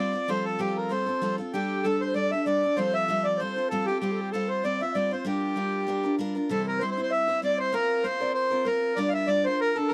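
A lightly swung 4/4 reel drives this spirited Celtic folk excerpt, where a reedy, mid-forward accordion carries the melody up front over a picked steel-string acoustic guitar accompaniment, and at 1.5 seconds an airy, tongued baroque flute slips in behind them with a straight-toned second line, all captured in a dry, close 1970s-style studio sound.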